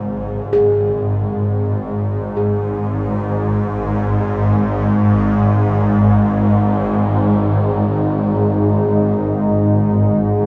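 A drenched cathedral reverb with a long five-second tail surrounds this short, ominous ambient fragment, which is cut from a longer piece, played in free time and tuned to A4 = 438 Hz over a G#5 chord. Up front, a swarming, granular drone of detuned unison sine tones fades in from the start, tense and slowly evolving in the low register. Behind it, dry, close-miked gamelan-type bossed gongs ring out round, bronze arpeggios through a tape echo, sitting in the background until they stop at 7.9 seconds. A bronze singing bowl, struck with a suede striker, hums with slow metallic beating in a boxy small room, barely audible throughout. At 3.3 seconds a deep, moody pad of detuned sawtooth and sine layers with a sub octave enters, holding dark sustained chords softened by chorus and its own reverb.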